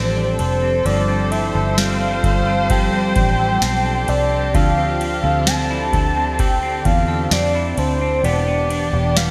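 A straight 4/4 pulse at 65 BPM from a booming analog drum machine, entering at 0.4 s with deep kick, crisp snare, ride cymbal and tambourine under gated reverb, drives this hazy, melancholic dream pop excerpt in D dorian, where a foam-muted, round fingered electric bass sits up front, a dark semi-hollow electric guitar plays clean arpeggios through subtle chorus and delay, a studio string section holds soft-attack sul tasto chords with light vibrato, and a mellow octave-layered synth lead of detuned, wave-folded triangle and sine tones carries the melody through chorus and delay, set in a moderate plate reverb and bright 1980s-style digital production as the harmony moves from F69 to G9sus4, Dm9 and Em7.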